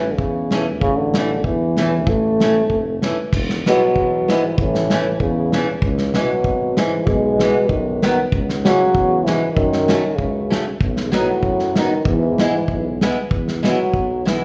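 A vibrato-laden, vintage-toned euphonium carries the jolly, bouncy melody up front in this alpine dance band excerpt at 96 BPM in 2/4, moving from A major to E major at 3.3 s over picked parlour guitar with fresh strings, a mellow soft-attack tuba bass, a muffled lo-fi drum kit with a tight kick and rolled-off top, and a second euphonium line in the background from 3.7 s, all bathed in the wet reverb of a recital hall.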